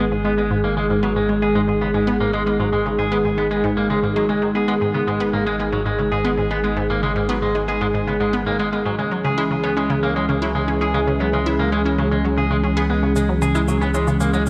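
Drenched in a wet echo-chamber reverb with a cassette-tape haze, this hypnotic, expansive slice of sequencer-driven space music moves at 115 BPM in G# minor, shifting from G#m to C#m at 9.0 seconds. A warbling, vintage sawtooth pad with chorus sits up front holding sustained chords, while a clean, scooped electric guitar picks filtered, delayed arpeggios and a juicy, squelchy blip pluck repeats its riff through chorus and delay over a round sine sub bass. Faint electronic shaker and percussion blips, re-recorded in a small room and carrying delay, slip in only at 13.2 seconds as the clip from a longer piece ends.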